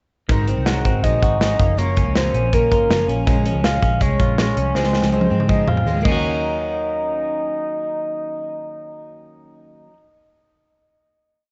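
A mellow, detuned octave-layered synth lead carries a wistful, restless motif through this jangly indie pop piece, joined by a shimmering twelve-string acoustic guitar, a phaser-tinged semi-hollow electric guitar rolling out fingerpicked arpeggios, a dark, foam-muted electric bass with slides, and a punchy studio drum kit whose fill from 4.8 seconds runs up to the final hit, the drums dropping out at 6.1 seconds, the whole piece colored by a worn, warbling cassette-tape sound in a small room.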